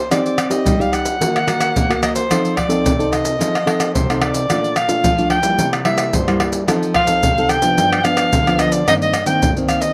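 Samba and choro at 110 BPM in straight 4/4, this short piece cut from a longer work carries a bittersweet, nostalgic mood. A mellow soprano saxophone carries the melody in a jazz-style solo, its vibrato, soft attack and scooped notes giving the line a tender, roomy quality even as it sits up front. Beneath it, a nylon-string guitar plays thumb-plucked accompaniment in a classical manner, its warm, acoustic tone marked by the occasional finger squeak. Percussion of maracas, surdo, pandeiro and tamborim joins at 0.1 seconds, played with soft hands and anchored by a deep surdo. The harmony moves from Cmadd9 through Ebm, F7, Bbmaj7, C7, F7 and G7 before settling on Cm7/G near the close, all captured in an outdoor recording with little reverb.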